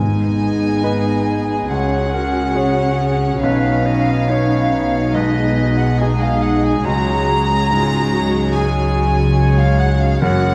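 Moving and sorrowful, this rubato orchestral film-score passage sets a floating, sul tasto violin melody against a pure, metallic flute line and a softer second violin part, with a bright, close-miked solo clarinet joining at 1.7 seconds. Beneath them, a clear grand piano, lush woody violas and soft-attack French horn chords sit in the background, while dark double basses and distant cellos carry the bass and timpani struck with medium mallets sound only until 1.2 seconds. A moderate scoring-stage reverb and vinyl crackle give the dark, warm production an aged glow.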